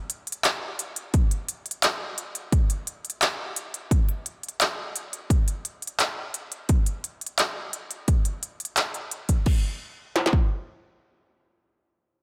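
An industrial electronic drum kit opens this spacious, cinematic drum and bass excerpt with crash cymbal, handclaps and crisp hi-hats, sitting up front with a warm tape tone and the sound of a large room. At 1.1 s a heavy kick and clanging snare join in a swung, half-time 4/4 groove, also close and forward in the mix, all under light reverb. The cymbals and claps drop out at 9.5 s as a new section begins, leaving the kick and snare to carry on alone until 10.4 s.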